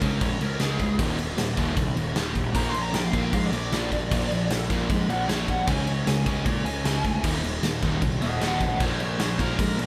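A biting, overdriven lead guitar solos across this upbeat, rebellious punk rock excerpt at 154 BPM, soaring up to C6 over a punchy fuzz bass, a big up-front rock kit with bright cymbals in a stone room, and two sludgy distorted rhythm guitars, one dark in the background and one very quiet, all captured live in one room with light reverb.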